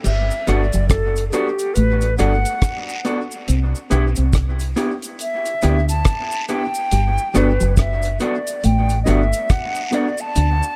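Romantic and smooth, this lovers rock reggae excerpt sits at a relaxed 70 BPM in 4/4 with a gentle swing on the sixteenths, moving from Gmaj7 to Cmaj7 and back in G major. A hollow, pure concert flute carries the melody up front throughout, close-miked and tongued with vibrato and a touch of tape echo. Beneath it, a round, punchy fingered electric bass with a foam-muted, dark tone and a deep, dry reggae drum kit, with a tight kick, rim click, hi-hat and crash cymbal and a rolled-off top, anchor the groove near the listener. A mellow, clean electric guitar plays a compressed riff with dub echo in the background, while from 0.5 s a slightly broken-up, lo-fi guitar through a small old amp adds stabs, also with dub echo. A worn, slightly out-of-tune tine electric piano with phaser supplies background accompaniment, and cabasa and guiro add close percussion with dub echo, all set in light reverb and small room ambience.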